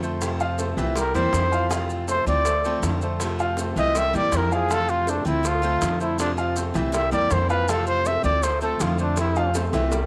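A breathy, close-miked trumpet carries the melody up front in this sunny, danceable Cuban son and guajira excerpt, its whispered, intimate tone and vibrato giving the solo a soft, pop-style glow from 1.0 to 9.5 seconds. Beneath it, a woody upright bass with gut strings plays pizzicato, thumpy and forward in the mix, while a bright baby grand piano spins brilliant arpeggios. A picked steel-string acoustic guitar with fresh strings adds full-bodied accompaniment, and grainy, mellow maracas shake along from the start. Tight, high-tuned bongos played with hard hands sit distant in the background, entering at 0.2 seconds and closing with a short fill at 9.6 seconds. At 161 BPM in straight 4/4 and F major, the harmony cycles through Fmaj7, C7 and Dm7, and a moderate echo chamber reverb lends the recording a roomy sheen.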